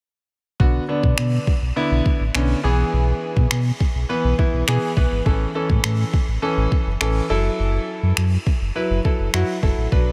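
Bittersweet yet confident, this dance-pop excerpt moves at 103 BPM in a straight 4/4, set in B dorian with the tuning pitched to A4 = 438 Hz and cut from a longer piece. A clear, intimate grand piano with audible action noise carries the chords from Bm through E/B, A and F#m7, sitting up front beside a deep, sine-like sub bass with octave, and both parts pump against the sidechain. An electronic R&B kit of finger snaps and a soft, tape-tinged kick plays throughout from 0.6 to 10.1 seconds, all framed by light reverb and a digital ambience.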